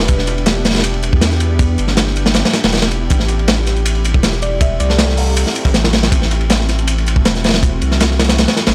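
A crunchy, saturated breakbeat kit sits up front in this dark, raw drum and bass and jungle passage at 159 BPM, its tight kick, medium-tuned snare, hi-hat and dark ride joined by a compressed, pitched-up sampler-style break with high-passed hats and snare tucked in the background. A thick, deep sine sub bass holds the low end beneath a blurred, evolving granular pad that moves from Em7 to Am7 at 3.1 seconds. A round, tine-like thumb-piano pluck with chorus and dub echo appears briefly at the start and again from 4.4 to 5.4 seconds, all set in a dry, gritty small room with vinyl crackle.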